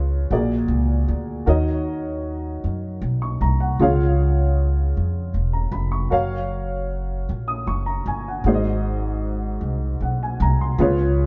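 The recording has the close, live feel of a small band playing together in a stone room, with a moderate reverb tail of about 1.2 seconds and a soft top end that stops short of any bright shimmer. It is a slow gospel passage in a straight 6/8, reverent yet jubilant, taken from a longer piece. A warm, slightly detuned upright piano sits up front, its short-sustaining chords giving the accompaniment an honest, natural character as it moves through A#7b13, D#m7, C#, F#maj7 and G#7. Beside it, a pizzicato upright bass with steel strings adds a dark, woody low end, also placed up front. Both instruments play together from the opening to the close at 11.3 seconds.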